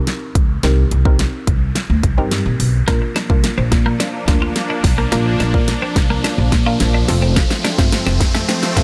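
Upbeat and euphoric, this dance-pop build-up at 107 BPM in Bb major rides a drum fill and an electronic riser from the start, with punchy, layered electronic kick, fat snare and hi-hat up front alongside a woody, growly pizzicato upright bass that pumps under sidechain compression. A mellow, rounded pluck with a sine-and-sawtooth edge and chorus shimmers beneath, moving from Cm7 to Bb and then F. At 2.9 seconds an airy, detuned sawtooth pad with a slow filter swell and a twangy, clean, picked twelve-string electric guitar riff join in, all set in a digital ambience.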